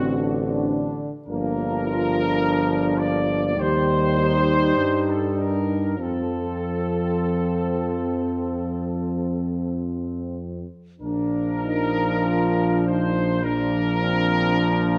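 In a slow, rubato 4/4 at 47-54 BPM, this serene, hymn-like classical passage for brass band in Bb major, cut from a longer piece, features a dark trumpet section with light vibrato carrying the melody up front, a mellow French horn section on a second line in the background, a punchy euphonium and a soft-attacked, close-miked trombone filling out the accompaniment, and a warm tuba anchoring the bass, set in a wet recital hall reverb as the harmony moves from D7/A through Gm7, Eb and F to settle on Bb at 11.0 seconds.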